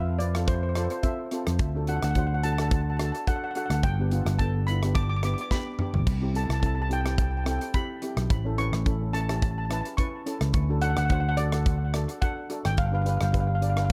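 Calypso at 107 BPM in 4/4, with a light 16th-note swing, this festive, bouncy excerpt is cut from a longer piece. A lead steel pan carries the melody with a bright, shimmering tone struck with hard rubber sticks, close-miked and dry yet full. A second pan of the double seconds type, played with medium rubber sticks, supplies accompaniment below it, and both pans are treated with analog delay within an echo-heavy mix. A fingered electric bass sits up front with a growly, round, amped sound. The drum kit enters at 0.2 seconds, punchy in the kick, with a medium-tuned snare, rim clicks, toms and airy, polished cymbals, and a fill at 5.5 seconds leads into a Cmaj7 as the harmony moves through F, D, G and A in a room with little reverb.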